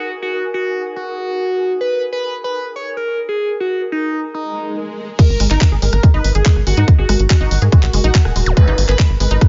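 Psychedelic trance with an alien, driving mood, this short excerpt opens with a gritty, screaming synth lead carrying the melody through phaser and tape echo, pumping against the sidechain. Beneath it sit a pulsing, tempo-synced gated texture holding sustained chords in the background and an ethereal, airy pad with ensemble chorus that drops out at 4.8 seconds. An electronic swell and zap leads into the drop at 5.2 seconds, where a tight, layered electronic kick sits up front alongside a garage drum kit of bright hi-hats, handclaps, rim clicks and crash cymbal. A dark, punchy sequencer bass with ring modulation drives the low end, while a lush, detuned unison pluck adds a mellow riff coloured by cassette tape and tape echo. The mix is dry and dark-topped, with little reverb and nothing above 7.5 kHz.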